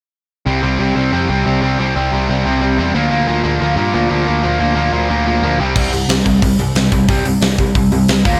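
Punk rock at 181 BPM in a straight 4/4, this short excerpt cut from a longer piece feels rebellious and energetic. A bright, double-tracked distorted electric guitar sits up front from 0.5 seconds, playing a picked riff between Bb2 and C4 over chords moving from C5 to Bb/D and back to C5. Alongside it, a picked electric bass with a growly, punchy tone holds the low end between C2 and G2. The big rock drum kit arrives at 5.8 seconds, as the second section begins, with a punchy kick, a medium-tuned snare, hi-hat and crash cymbal, its sound mid-forward with a rolled-off top and a big-room character. The mix is dry, with little reverb, keeping the guitar and drums close and immediate.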